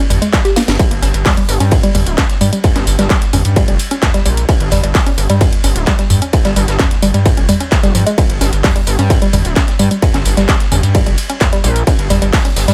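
A distorted, overdriven electronic kick sits up front through this dark, industrial excerpt of driving peak-time techno in a straight 4/4, with a drum fill arriving at 0.6 seconds. Beneath it a gritty, aggressive synth bass, saturated and sawtooth-edged with oscillator sync and a resonant filter pluck, pumps and holds the low end from D1 to G2. A woody wave-folded pluck carries the riff between F3 and G4, its percussive, evolving tone thickened by chorus, overdrive and digital delay and likewise pumping. A layered techno kit adds a cracking snare, handclaps, tambourine, toms, hi-hat and ride, overdriven, with its hats, percussion, cymbals and toms all pumping. Further back, a raw garage kit with a high-tuned snare, hi-hat and ride lends a mid-forward, rolled-off small-room texture, while light reverb gives the whole a studio ambience over the chord of G5.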